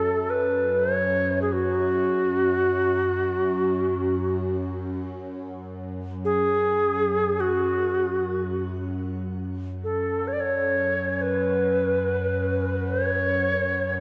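Soaked in a long plate reverb, this dreamy, spacious excerpt of free-time world meditation music has a haunting stillness. Up front, a reedy cedar flute in the Native American style carries the melody with pure wooden tone, chiff, tongued notes and vibrato, its bright voice trailed by shimmer reverb and analog delay. Alongside it, an evolving wavetable pad holds a low, detuned drone with slow attack and long release, morphing through a phaser and its own reverb.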